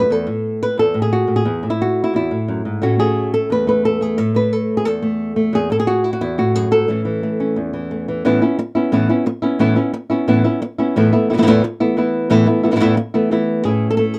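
A fingerpicked flamenco guitar carries this short solo piece, its acoustic tone dark and placed up front, covering a range from E2 to B4. The mood is proud and festive, moving at a brisk 177 BPM in a straight 4/4 feel in A major. The harmony opens on A5 and settles onto A, leans toward Esus4 and returns home, then at 8.2 seconds a second section brings an Aadd9 before Esus4 leads back to A at 13.7 seconds. The sound is that of a dry, close 1970s-style studio recording, with light reverb adding only a touch of space around the guitar. Lasting about 14 seconds, it is cut from a longer piece.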